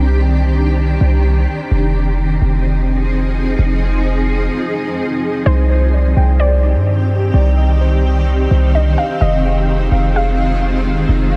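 Over a half-time 4/4 hip hop groove at 128 BPM in C minor, a deep, boomy 808-style bass and a cloudy, evolving granular pad with its own reverb hold Cmadd9 and Fm7 chords through a hazy, melancholic excerpt, and at 5.5 seconds a warbly, lo-fi dusty pluck melody and muted, felt-like synth key arpeggios enter in the background with chorus and diffuse delay, all steeped in a dreamy, reverb-soaked space.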